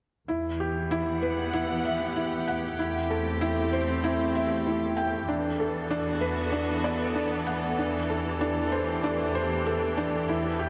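A felt-muted upright piano leads this cinematic electronica fragment, its soft, intimate riff sitting up front between D4 and G5 and trailed by a diffuse ambient delay. Alongside it, a dark studio string section, also up front, plays sustained chords with light vibrato and a woody, bowed tone, moving through Emadd9, Am7/E, D6/E and C69/E. Underneath, a muted symphonic double bass section stays on a low E, its con sordino sound veiled and rich. All three parts play together from 0.3 to 10.7 seconds in a straight 4/4 feel, cut from a longer piece. A lush hall reverb soaks the mix, giving the moving, dreamy music a spacious glow.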